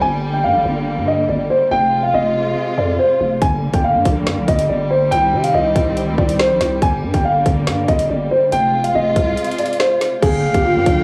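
Light reverb and a cassette-tinged home-recording character frame this cold, ominous drill cut, taken from a longer piece and set in G phrygian at 141 BPM with a half-time feel. A dark, boxy concert grand carries the melody up front, its intimate tone marked by audible action noise, deep bass, plate reverb and tape echo, while a lush symphonic string section holds bowed chords with vibrato and portamento beneath it. A growling, buzzy 808-style bass with a fast attack and decaying tail anchors the low end under a progression that moves between Gm, Fm and Cm. The electronic drill kit arrives at 3.4 seconds, sitting up front with a hard-clipped kick, woody snare, metallic hats and crash, all given a cassette tape grit. After a brief break, an airy, close-miked concert flute enters at 10.2 seconds on F5, its crisp attack and expressive vibrato bathed in plate reverb.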